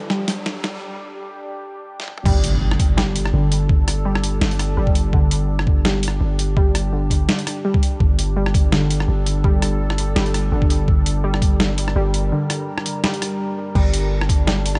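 Cinematic and spacious, this half-time drum and bass cut opens on a short build-up, with a drum fill and a riser over a filter sweep on a warbly, dusty pluck whose lo-fi, sampler-gritty arpeggios carry analog chorus and digital delay. A deep, moody ambient pad sustains dark chords beneath, its chorus and built-in reverb breathing with sidechain pumping, while a long, sine-based 808-style bass holds a mellow, up-front low note. At 2.3 seconds the drop lands with a background impact, and an electronic kick drum enters, thumpy, compressed and tape-warm. A gritty, pitched-down boom bap kit sits up front, with a medium-tuned snare alongside hi-hat, rim clicks, toms and crash cymbal, in a swung half-time feel interrupted by a break. Near the close, at 13.9 seconds, an eerie, nasal, metallic FM drone creeps in, sitting in the background, and the dry, dark mix is cut from a longer piece.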